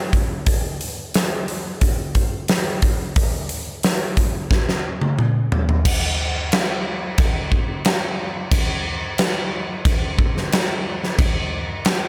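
A big acoustic rock drum kit opens this dark, angsty rock excerpt at a straight 90 BPM in 4/4, sitting up front in a big room with light reverb; its punchy kick, fat snare, toms, hi-hat and bright crash cymbal drive the first part until a drum fill at 4.5 seconds leads into a new section at 5.8 seconds.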